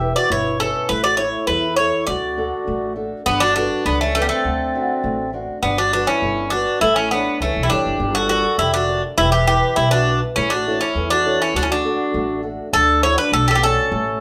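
A short fragment of relaxed Greek folk in D major at 101 BPM in a straight 2/4, opening with the full band together: the metallic, double-strung bouzouki up front carrying the melody, a mellow, reedy accordion on a second line, a dark, boxy fingerpicked acoustic guitar accompanying, and a woody, growly pizzicato upright bass. The harmony moves through Em, A and D, then colours like Gadd9, D7 and a borrowed Gm, before a new section arrives at 12.7 s. The players sound like a live band sharing one room, with a short, wet studio reverb giving the whole a warm, intimate glow.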